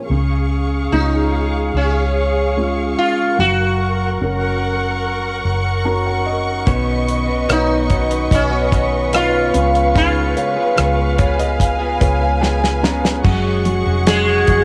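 A woody, boxy upright piano and lush bowed strings open this hopeful, emotional pop ballad at 73 BPM, joined almost at once by a round, foam-muted electric bass and, from 0.9 seconds, a buzzing, shimmering sitar carrying the melody over chords that move from C# to F#. At 6.7 seconds a dry 70s drum kit with dark cymbals and a tight kick arrives alongside bright, clean arpeggios from a direct-recorded electric guitar, while the piano adds fills and a drum fill leads into a closing F#sus2. This home recording on cassette gives the piano, strings, sitar, guitar and drums a tape character, all set in light studio reverb.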